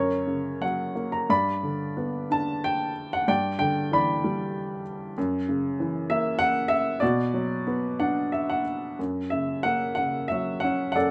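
In a flexible 3/4 that drifts between 86 and 100 BPM, the rubato gives this classical solo piano passage a lyrical, breathing pulse. The mood is moody and cool, carried by a single upright piano tuned to A4 = 439 Hz and spanning F#2 to B5. Its tone is woody and intimate, placed up front with audible action noise and a light reverb around it. The harmony moves from F# through G, Em7/G and F#7 before settling on Bm, and a short piano fill at 7.7 s leads into a new section at 9.0 s that returns to F#. Lasting just 11.1 seconds, this is a brief passage cut from a longer piece.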